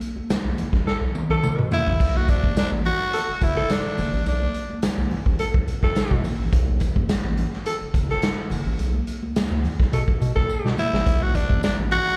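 A funky, sly funk excerpt at 106 BPM in B minor, heard as a live gig through a club PA, where a raw garage drum kit with a punchy kick and rolled-off top sits up front beside a jingly, very quiet tambourine and ringing, high-tuned congas in the background with slapback echo. A deep, thick saturated sub bass enters at 0.2 seconds, and drum fills arrive at 0.9 and 10.5 seconds as the harmony moves from B5 to B7(no3) at 2.0 seconds. Two growling tenor saxophones carry the horns, one a mellow, breathy second line with subtone and scooped notes holding A4, the other a bright, punchy pop-style melody between D4 and F#4 that returns at 10.8 seconds, both raspy and tinged with slapback echo.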